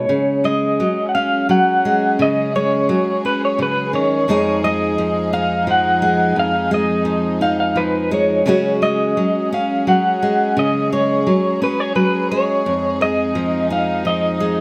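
An electric guitar through a small old amp carries the melody with a slightly broken-up, lo-fi tremolo tone over fingerpicked steel-string acoustic guitar, and from 0.1 seconds a dark studio string section adds soft-attack bowed chords with light vibrato beneath, in this reflective, melancholic acoustic folk-pop ballad at 86 BPM in 3/4, cut from a longer piece, where the chords move between Dbsus4 and Fm7 in light reverb.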